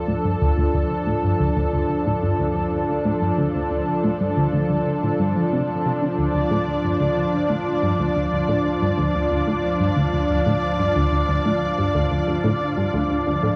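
A straight 4/4 pulse drives this hypnotic, cosmic space-music excerpt, anchored by a tight, sequenced synth riff with a sawtooth and wave-folded pluck, chorus, phaser and analog delay, its arpeggio sound carrying a filter sweep throughout. Above it, a lush, thick unison pad holds detuned sustained chords on a single minor chord, brightened with chorus and shimmer reverb. A very quiet, breathy, wind-like tuned noise texture drifts in the background, all set in a vast, echoing cathedral space.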